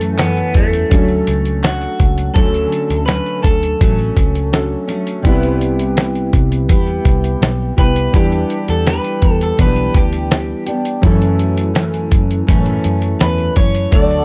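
Laid-back and nostalgic, this bedroom-pop fragment sets a twangy, slightly broken-up electric guitar melody over full-bodied fingerpicked acoustic guitar, warbling lo-fi synth keys, round foam-muted bass and an up-front, muffled sampler drum kit with a thumpy kick and fat snare, as a distant group handclap appears briefly near the start and an airy, hollow pad enters only at 13.9 seconds, all within a dry, gritty, tape-saturated sound.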